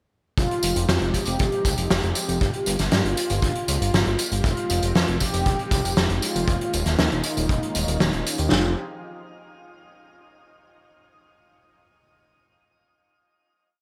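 Bright 1980s-style digital production with a lush hall reverb frames this cinematic, driving synthwave piece at 118 BPM, where a mellow, brassy synth plays a repeating riff melody with vibrato, delay and shimmer reverb over a soft, smooth supersaw pad pumping in the background, a fat, detuned analog bass sequenced in sixteenth notes, and two roomy, up-front indie drum kits (one with a punchy machine kick and medium-tuned snare, the other with a fat snare, closed hi-hat and tambourine in an 80s backbeat, both soaked in gated reverb), moving through Fm7, Gm7 and Eb7sus4 before settling on a final Fm7 chord at 8.5 seconds.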